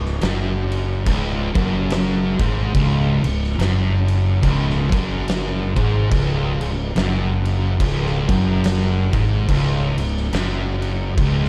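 Swung eighths roll at a slow 71 BPM in 4/4, setting up a hypnotic, brooding stoner and doom metal passage cut from a longer piece. A thick, double-tracked fuzz guitar riff sits up front in a dark, distorted tone, underpinned by a growly, overdriven fingered bass with a punchy bite. An oversized, low-tuned acoustic kit enters at 0.1 seconds with a fat snare, a punchy kick and dark cymbals, its saturated, gritty sound ringing in a bright stone room, all within a dark studio production built around a C#5 power chord.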